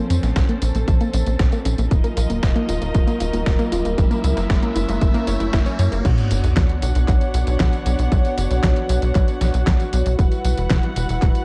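A dark, warm production with light digital reverb and a faint vinyl crackle frames this nostalgic, danceable italo disco excerpt at 116 BPM in a straight 4/4. A punchy, layered electronic kick sits up front beside a tight, driving sequencer bass, its sawtooth, square and sine tones wave-folded into a fast-decaying filter pluck with a moving notch. A sampler-style 12-bit drum machine with a tape-softened tone adds a fat snare, handclaps, hi-hat, tambourine and crash, all high-passed and re-recorded in a small room. A dark, intimate string section holds bowed sul tasto chords with light vibrato throughout. For the first 6.0 seconds, a round, detuned analog pluck plays arpeggios through chorus, a cassette tape effect and delay under a filter sweep, moving through Bbmadd9, Ebmadd9 and Gb7. A background riser runs from 1.5 s into a sub drop impact at 6.0 s, where the music shifts to B minor on Bmadd9 before turning to Emadd9.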